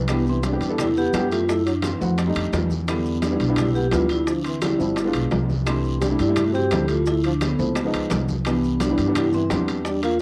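A home cassette recording in a small room, with a faint mains hum, captures this lively, sophisticated slice of Afro-Cuban jazz cut from a longer piece. A woody, thumpy pizzicato upright bass sits up front, while a metallic, airy vibraphone played with medium hard mallets and the motor off carries the melody. A breathy, whispered trombone with light vibrato and scooped notes adds a second line, and a dark, slightly detuned, boxy upright piano supplies accompaniment until 9.9 seconds, over ringing metal-shell timbales, round low-tuned bongos, bright distant congas, a raspy guiro and grainy maracas.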